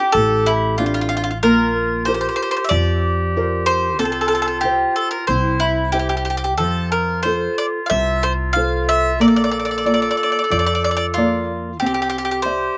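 Romantic and lively, this Italian folk serenade at 93 BPM, cut from a longer piece, sets an up-front, picked bowl-back mandolin with bright double strings on the melody over a vintage-toned clarinet second line in classical style, a small, dark fingerpicked nylon-string guitar and a woody, thumpy pizzicato upright bass, all heard in a dry outdoor recording with a dulled top end.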